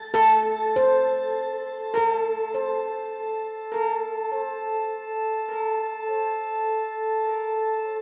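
In free time, this reflective, spacious ambient fragment fades in as a ringing, bright handpan plays arpeggios through tape echo and shimmer reverb until 5.0 seconds, while a glassy, ethereal glass harmonica with a slow attack and beating holds a shimmering texture from 0.2 to 8.0 seconds, both up front in a wet concert-hall reverb over an A minor chord.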